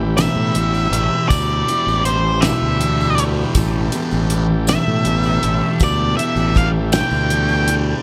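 An up-front octave-fuzz lead guitar carries the melody through tape echo, its dark, distorted tone set against a double-tracked thick fuzz guitar riff that sounds bright through a phaser, while a round, overdriven fingered bass sits up front in the mix. This trippy, dark psychedelic rock excerpt moves in a slow 6/8 at 53 BPM on a single Em/A chord, with a cloth-damped drum kit giving a fat snare, tight kick and rolled-off top from a small room. A vintage combo organ holds buzzy sustained chords with heavy vibrato in the background, joined by a jingly, close tambourine, all in a dry mix with little reverb.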